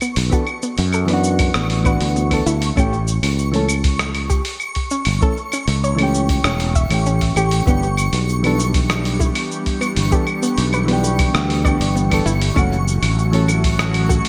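A growly, up-front fretless electric bass anchors this blissful, sunny sunset chillout excerpt, joined by an overdriven electronic kick, a gritty, tape-warm sampler-style drum kit of cabasa, claves, hi-hat and rim click, warbling electric-piano-like synth keys, a background pluck playing mellow arpeggios, and a twinkling granular shimmer up high, with an airy, breathy pad entering at 7.7 s and very quiet high-tuned bongos at 8.6 s, all set in a lush hall reverb with bright 1980s-style digital production.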